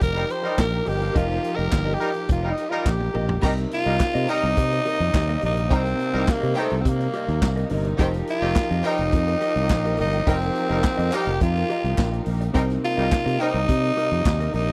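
A raspy, growling tenor saxophone leads this sultry, danceable disco cut in C minor at 105 BPM, opening with a solo passage that a drum fill closes at 3.4 seconds, where a lush violin section adds a second line. Up front, a punchy vintage drum kit and a fingered electric bass drive the groove over F9sus4 and Cm7 chords, while tight horn stabs carry tape echo. A dark electric guitar with phaser, a very quiet grand piano, background symphonic strings and crisp group handclaps fill out the dry, close 1970s-style studio sound.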